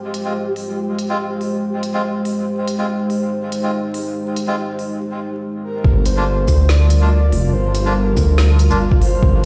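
A rumbling, detuned saw bass arrives up front at the drop at 5.8 seconds alongside a deep, layered electronic kick, giving this cut from a longer deep dubstep piece in G phrygian its heavy, dark half-time weight at 142 BPM. Before that, a moody analog pad with chorus holds sustained chords over a flickering granular texture in the background, while a reedy, nasal melodica fires dub-echoed stabs and a filtered deep house kit of smooth hats, shaker and woody snare ticks along, easing into a brief break at 5.0 seconds. From 5.6 seconds a soft, breathy flute-like lead with vibrato and dub echo carries the melody, moving from Fm into a Gm7 chord at 5.8 seconds, with the whole mix set in a stone-room echo chamber and flecked with vinyl crackle, as if played on a big sound system in a bare room.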